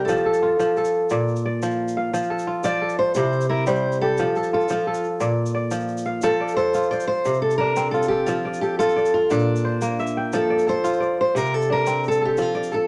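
Set in a moderate studio reverb, this short cut from a longer piece of joyful, hypnotic West African string and xylophone music moves in a straight 12/8 at 117 BPM in F major. Up front, a fingerpicked steel-string acoustic guitar carries the melody with a warm, concert tone, while a crisp, ringing kora spins arpeggios alongside it throughout. A grainy, bright tube shaker sits quietly in a small room, keeping time over a gently cycling harmony of F, Bb and C that closes on a Bbmaj9/C at 11.4 seconds.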